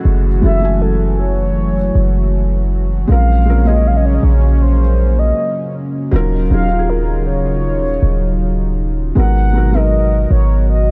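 Dark, warm production and digital ambience frame this late-night, longing contemporary R&B excerpt at 79 BPM in 4/4, where a deep, boomy 808-style bass sits up front beneath a soft, intimate felt-muted upright piano and a smooth, detuned analog pad with chorus, while a very quiet electronic downlifter runs through the first 3.1 seconds and a round, warbling horn-like synth lead enters at 0.4 seconds with vibrato, chorus and tape echo over F#m9, A#m9, D#m9 and G#m9 chords.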